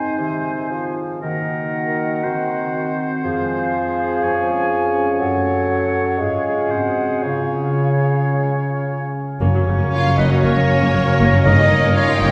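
The up-front concert harp, thumb-plucked and ringing, spins arpeggios through this fast, dramatic romantic orchestral passage in Db major, a lively and graceful excerpt at 108-124 BPM with a rubato feel, as a warm oboe, pure silver flute, bright clarinet and distant bassoon weave second lines and accompaniment over mellow French horn chords. At 9.4 seconds the harmony turns toward F# and the strings arrive: rich violas and double basses and a very quiet cello section fill in beneath, and at 9.9 seconds a lush, expressive violin section takes the melody with soft-attack vibrato, shadowed by a clear background violin line. Everything sits in a wet scoring-stage reverb heard from further back in the room.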